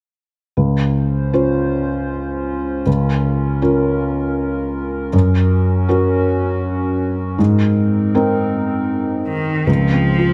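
Neoclassical piano and strings in a rubato triple metre, intimate and hopeful, taken from a longer piece. A felt-muted upright piano sits up front with a soft, mellow, thick-felt tone, carrying the accompaniment through chords that move from Dbmaj7 through Bbm/Db, Gb and Abadd9 back to Dbmaj7, while from 1.0 seconds a hollow, flute-like pad with a slow attack and chorus holds dark sustained chords lower in the mix. At 9.3 seconds a single bowed cello enters up front with a rich, expressive line full of vibrato and portamento, and the whole is captured by close, detailed microphones in light reverb.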